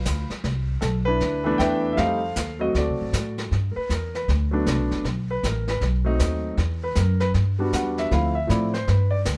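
Grand piano and pizzicato upright bass open this swinging, relaxed jazz piano trio excerpt at 0.0 s, with a brushed drum kit joining a breath later. The tempo is a brisk 157 BPM in 4/4, the eighth notes carrying a light swing, and the harmony moves through Cmaj13, F9 and D7 before settling into G major. At 3.5 s the piano takes a solo over Gmaj7, B7b9, Em7 and Dm7, its melody ranging from E3 to G5 with a warm, natural tone placed up front. The bass sits low and close, its gut strings giving a woody, dark, thumpy sound. Behind them, the drum kit works brushes across the snare alongside the hi-hat, with a medium-tuned snare and a boomy kick captured in a small, acoustic-sounding room. A light reverb rounds out the recording, which is cut from a longer piece and ends at 9.4 s.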